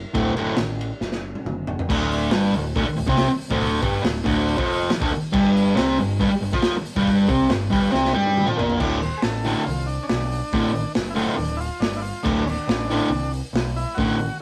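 A double-tracked fuzz guitar sits up front and drives this rowdy, raw garage rock cut at 139 BPM in a straight 4/4, playing a picked riff over chords that move from D to D minor add11 and G minor add11. Beneath it, an overdriven electric bass growls low, while a crunchy breakbeat kit with a punchy kick, medium-tuned snare, toms and dark, rolled-off cymbals adds saturated, gritty weight. Drum fills mark the turns into each new section, the second arriving just before 8.8 seconds. At that point a vintage, buzzy combo organ with light vibrato takes an overdriven solo over a bare D5 power chord, carrying to the close at 14.4 seconds. The rough rehearsal-room sound with light reverb keeps the whole take loose and immediate, and the clip is cut from a longer piece.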